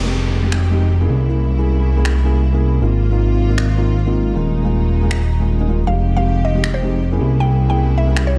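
A fat, up-front analog bass anchors this short future bass excerpt in F minor, its thick, nasal tone blending detuned sawtooth and square waves with a fast filter pluck that then sustains. Above it, a felt-muted upright piano plays soft, dark accompaniment with audible action noise and tape echo, while a bright symphonic string section holds biting, lightly vibrato chords from a distance. An electronic downlifter sits in the background until 2.8 seconds, and layered electronic finger snaps with a tape-warm, roomy character come in at 0.5 seconds over a half-time feel at 157 BPM with a gentle swing. At 5.9 seconds a woody, round FM pluck takes the melody, its mallet-like, percussive attack decaying through chorus, phaser and tape echo. The harmony moves through Fm9, C7b9b13, Ab69 and Eb7sus4 in a dry, close mix, giving the passage a lush, bittersweet mood.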